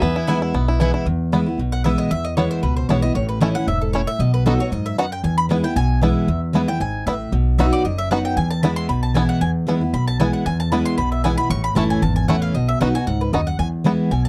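A bright, double-strung mandolin takes a solo from 1.1 seconds in this lively, virtuosic bluegrass excerpt at 230 BPM in E major, over a full-bodied, up-front jumbo acoustic guitar with old strings, a twangy, percussive fingerpicked banjo melody and a thumpy pizzicato upright bass, captured as a dry, close 1970s-style studio recording with light reverb.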